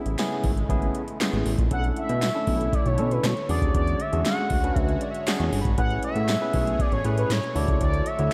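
An expressive, smooth synth lead with chorus, vibrato and analog delay takes the melody from 1.7 s, floating over a slick, danceable early-eighties boogie funk groove at 118 BPM in B dorian, with chords moving from Amaj7 through Bm11 and E13 to Amaj9 and Dmaj7. Underneath, a fat, saturated analog bass with ring modulation and filter sweeps sits up front beside an overdriven electro drum machine with a deep kick, punchy snare, handclaps and metallic hats. A barky tine electric piano comps through a combo amp and plays a fill at 4.8 s, while a lush, detuned unison pad with chorus and phaser and a jingly tambourine stay in the background of a dreamy, reverb-soaked hall.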